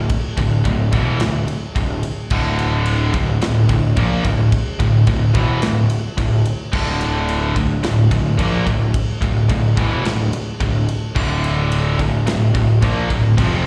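Relentless and epic, this heavy metal passage, cut from a longer piece, moves in a half-time feel over a straight 4/4 pulse, anchored on a D5 power chord. Two bright, picked electric guitars drive the riff from start to finish: one scooped and high-gain, the other tight and distorted, sitting further back in the mix. Beneath them, a fuzz-laden picked electric bass plays up front with a growly, punchy, overdriven tone, heard both direct and amped. An acoustic studio drum kit enters at 0.1 seconds and stops at 13.5 seconds, its tight kick, medium-tuned snare, crash and ride cymbals placed up front. The whole performance comes across like a live gig heard through the venue's PA, wrapped in small room ambience and recital hall reverb.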